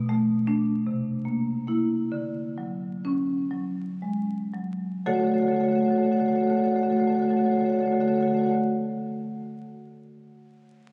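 This contemporary classical piece for solo marimba is a brief excerpt from a longer work, with a flowing, playful mood in 6/8 that moves freely in rubato. The marimba, played with medium hard mallets on padauk bars, has a woody, dark and smooth tone with a percussive edge, and it sits up front in the mix as it ranges from B2 to F#5. The opening passage slows down through its first 5.1 seconds as the harmony moves from Bm7 through C7 to Dmaj7, and a new section begins at 5.1 seconds, with the marimba falling silent at 8.6 seconds. The sound carries a wet church reverb layered with a club reverb, captured on a phone in the room, with vinyl crackle, compression and a muffled top end that rolls off above 10.9 kHz.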